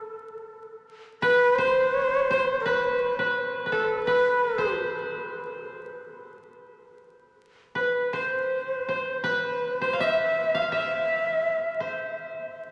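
A breathy, mellow end-blown bamboo shakuhachi carries the melody, entering at 1.2 seconds and sounding close and up front, with a soft attack and expressive vibrato. Beneath it, a koto plucked with fingerpicks plays a second line, its tone woody and dry, present from the very start until the close at 12.7 seconds. The piece is calm and austere Japanese traditional chamber music in 4/4, with uneven beats and a rubato feel that lets the phrases breathe freely. A long, wet cathedral reverb surrounds the recording, and a vinyl crackle adds an aged texture. This short passage is cut from a longer piece and stays within a single unhurried section throughout.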